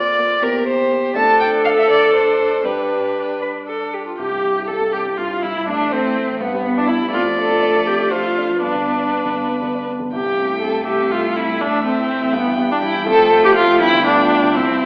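A steady, straight 6/8 pulse drives this spirited, cheerful excerpt from a quick classical-period movement for piano quartet, heard through a wet recital-hall reverb and an AM-radio sound. A single bowed violin carries the melody up front with smooth, even vibrato, the cello shapes a second line with light vibrato, and the grand piano gives warm accompaniment. The rich viola joins at 0.2 s with expressive portamento, and a longer passage from 4.2 s closes on a G9 chord.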